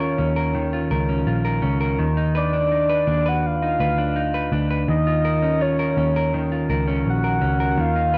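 From the first moment, a soft, octave-layered synth lead with a mellow, wave-folded sine tone and vibrato carries the melody over up-front, hollow-body electric guitar arpeggios, both touched by chorus and analog delay, while a round, foam-muted picked bass with transformer saturation anchors this ethereal, melancholic dream pop fragment at 83 BPM as the harmony moves from Ebsus2 to Ebmmaj7 and Ebm9, the mix sitting in light reverb with a dry, gritty hardware character.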